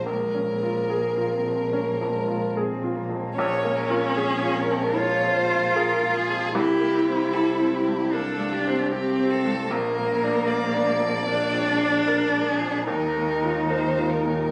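Neoclassical piano and strings in a longing, reflective mood, this excerpt at 75 BPM in 4/4 moves with a rubato feel as a rich, expressive solo violin sings the melody with vibrato and portamento over an up-front, soft-attacked cello second line, a bright, woody upright piano accompaniment with audible action noise and short sustain, and a distant bowed double bass, all captured on a phone in a large studio room with moderate reverb and compression, the harmony passing through Bbm7, C7, Bb and Ebsus2.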